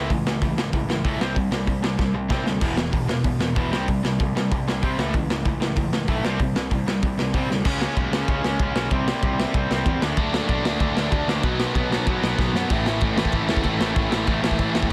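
A raw, upbeat punk rock blast opens with a bright, overdriven garage guitar up front and a distorted electric guitar further back, both picking out riffs over a growly fuzz bass, while a gritty, saturated drum kit with dark cymbals and a punchy kick pumps in a small room. Drum fills punctuate the rebellious drive around 2.0 and 7.5 seconds as the power chords shift through each section. At 10.2 seconds a thick, double-tracked fuzz guitar joins the riffing, and the dense, dry mix stays hard-hitting until this cut-off fragment ends.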